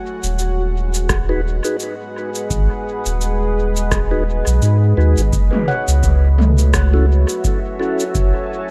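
Ambient dub in F# dorian at 85 BPM with a swung 4/4 feel and a deep, hazy mood, this short cut from a longer piece rests on a round, up-front sine sub bass and a moody detuned sawtooth pad with chorus and built-in reverb, while a bubbling resonant stepped-filter texture simmers in the background until 5.3 seconds, an organic electronic kit of cabasa, rim click and toms with dub echo enters at 0.2 seconds and a tape-warm analog kick joins at 1.1 seconds, a soft flute-like tonewheel organ with key click and slow rotary speaker adds echoing stabs, and a bright, ringing handpan returns with meditative arpeggios from 5.7 seconds as the chords move from G#m7 to F#m7.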